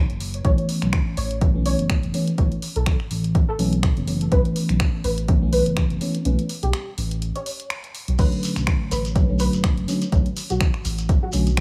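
A punchy, tape-warm electronic kick drum sits up front in this late-night, hypnotic deep house excerpt, driving a steady 124 BPM in 4/4 with a 56% swing on the 16ths. Beneath it, a smooth, dark synth bass built from sawtooth and square waves with a touch of ring modulation holds the low end, pumping against the kick through sidechain, while an analog drum machine adds crash cymbal, finger snaps and hi-hat. A mellow FM electric piano, full-bodied and colored by chorus, phaser and tape echo, plays pumping stabs over a harmony that moves from Aadd9 to Bm7. Above it, a soft, round pluck with a sub octave and a filter sweep carries the melody through ensemble chorus and digital delay. After a break from 6.3 to 8.2 seconds, a grainy acoustic shekere joins in the background, and the whole mix keeps a dry, close small-room sound.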